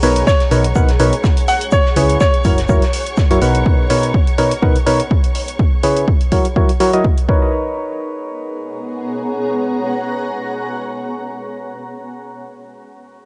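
Piano house at 124 BPM in B major, joyful and feel-good, with a swung 16th groove and a Bmaj9, C#m7, F#7 progression, cut from a longer piece. A hollow, dark organ stab with chorus and tape echo carries the riff up front through 11.6 seconds, over a punchy, tape-warm electronic kick, an analog electronic hi-hat, a round FM bass in the background until 3.6 seconds, and a loose, small-room indie kit of hi-hat, shaker and snare. A brilliant concert grand piano sings a brief melody from 0.3 seconds, while a rich bowed string section and a cloudy, evolving granular pad breathe with sidechain pumping, all colored by the soft haze of a home cassette recording.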